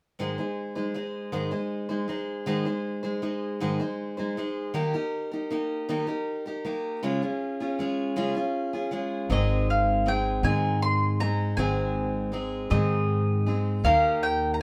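Set in a small, moderately reverberant room, this gentle, warm folk excerpt in Ab major moves in an unhurried 6/8 at 53 BPM, tuned slightly low to A4 = 435 Hz, opening at 0.2 s with a bright, full-bodied picked steel-string acoustic guitar up front before an up-front double-strung mandolin melody and a woody pizzicato upright bass join at 9.3 s.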